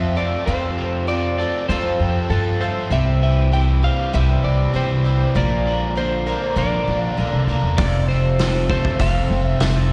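Heard live through a venue's PA with recital-hall reverb, this jangly folk rock and heartland rock excerpt moves at 98 BPM in F major over F, C and Bb chords. A slightly broken-up, compressed lead guitar carries the melody, a boxy, shimmering octave-doubled twelve-string acoustic picks the accompaniment, and a biting, double-tracked overdriven guitar plays a low riff, all three guitars ringing with slapback echo, while a woody, thumpy pizzicato upright bass sits up front and a loose indie drum kit with a punchy kick and rolled-off top enters at 7.8 s.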